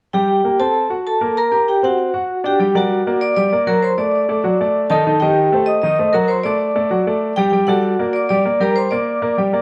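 Latin music at 195 BPM in G harmonic minor, danceable and passionate, in which a ringing, metallic vibraphone struck with hard mallets carries the melody up front with fast motor vibrato, slapback echo and a boxy small-room tone over a clear, polished baby grand piano accompaniment, all heard through a moderate studio reverb and the worn, warbling pitch drift of old cassette tape in this short cut from a longer piece.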